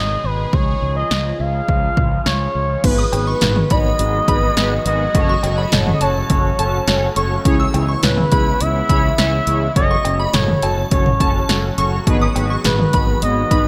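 Synth-pop at 104 BPM in F# dorian, nocturnal and driving, where a smooth, expressive synth lead with chorus and delay carries the melody over a sweeping resonant pad and a bright, amped fretless electric bass, joined at 0.5 s by a punchy, dry, overdriven analog drum machine up front with cowbell and toms, then at 2.8 s by mellow detuned synth brass with phaser and at 3.0 s by a shimmering FM bell line with a dreamy halo, all set in light digital ambience with bright 1980s-style digital production in this fragment of a longer piece.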